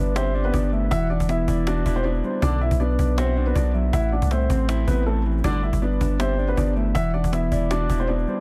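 Set in a small room, this melancholic, dark half-time trap excerpt in E minor at 159 BPM pairs a mellow baby grand piano melody with tape echo, a soft, round octave-layered synth lead drifting in the background through chorus, phaser and vibrato, clean fingered electric guitar accompaniment, a deep, up-front 808-style bass with long decaying sine tones, snappy hard-handed cajon from 0.2 seconds, and brief smooth brass ensemble stabs at 2.4 and 5.4 seconds over chords moving from Gadd9 through Emadd9, Bm and Am, back to Gadd9 and on to Esus2.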